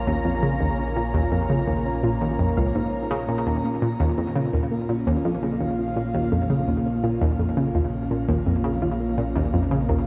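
Ambient, sequencer-driven space music in Bb minor, this hypnotic, cosmic passage moves at 84 BPM in a straight 4/4, cut from a longer piece and resting on a single Bbm chord throughout its 10 seconds. An up-front analog pluck carries the riff between Db2 and Db3, its detuned sawtooth and square tones given a ring-modulated edge and a filter sweep, with chorus, delay and shimmer reverb trailing its bright, fast-attack notes. Alongside it, a bright, up-front sweeping resonant pad holds sustained chords from Bb2 to Bb5, evolving through a filter swell with chorus and shimmer reverb. Underneath, an analog drone sits on Bb1 as a mellow bass, its pulse-width modulation and moving notch giving it a shifting body. A very quiet, gentle pluck traces arpeggios between Bb3 and F5, while the whole mix sits in a wet echo chamber with a 2.3-second reverb tail.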